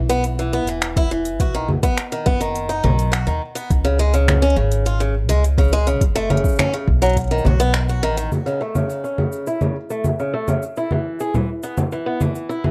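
Folktronica with a playful, warm mood at 104 BPM in E major, cut from a longer piece. It is built on a woody, thumpy pizzicato upright bass with gut strings, a bright, boxy picked swing-style acoustic guitar playing arpeggios up front through a low-pass filter, digital delay and plate reverb, an overdriven organic electronic kit of cabasa, congas, finger snaps and smooth hi-hat, and a soft, overdriven electronic kick. A band accent and break arrive at 7.7 seconds, the bass drops out at 8.3 seconds, and a filter sweep on the guitar carries the closing section in a light reverb.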